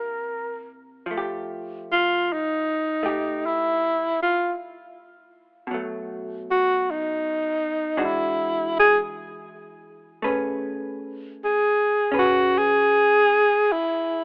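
A breathy, whispered alto saxophone carries the melody up front over the dark, compressed picking of a clean hollow-body electric guitar in this late-night, romantic jazz ballad at a slow 52 BPM with a gentle swing, the saxophone easing into an intimate, vibrato-touched subtone solo from 1.1 seconds as the harmony moves from C7 and Fadd9 through E9 to Amaj9, the whole piece cut from a longer one and heard through a rough home-demo mix with a telephone-like tone and a moderate plate reverb.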